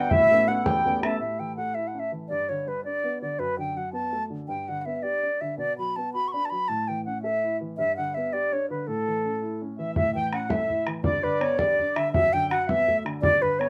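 Lively and rollicking, this Celtic jig excerpt in 6/8 is led by a bright wooden flute with an airy, tongued, close-miked tone sitting up front, over a woody upright piano accompaniment that runs throughout. A shimmering, hammered cimbalom rings softly in the background until 3.9 seconds, while a reedy accordion with slow beating and a tight, damped, band-limited bodhran open the piece, drop out, and return together around 10.0 seconds. Light reverb gives the ensemble a natural, acoustic feel.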